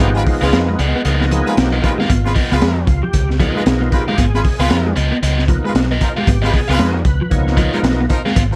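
A thick, overdriven tonewheel organ takes the lead with a gritty solo across the full 8.6 seconds, its stabs colored by chorus vibrato and a slow rotary speaker. This strutting, energetic funk excerpt moves at 115 BPM in 4/4 with a 60% swing on the sixteenths, sitting on a single Db13 chord in Db mixolydian. Up front, a crunchy breakbeat kit with a high-tuned snare, tight kick and saturated, rolled-off top pairs with a round, foam-muted vintage fingered bass. A biting overdriven guitar supplies picked accompaniment, while a dark, compressed clean guitar plays a riff through an ensemble chorus in the background. A clear horn section with light vibrato carries a pop-style second line, entering at 0.1 seconds. The production is dark and warm, with light reverb and a small room ambience.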